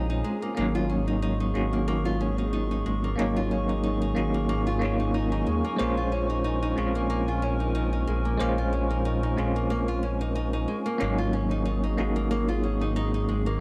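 Dark and smoky, this trip hop excerpt moves at 92 BPM with a light swing, circling between Bbm7 and Ab7sus4 across its 13.6 seconds. A deep, rumbling detuned saw bass sits up front with transformer saturation, while a bell-like tine electric piano carries the accompaniment with tremolo, tape echo and a gritty 12-bit sampler edge. A warbling, nostalgic pad holds sustained chords alongside a small fingerpicked nylon-string guitar whose arpeggios show finger squeak and tape echo, all in a dry, gritty hardware sound with light digital ambience.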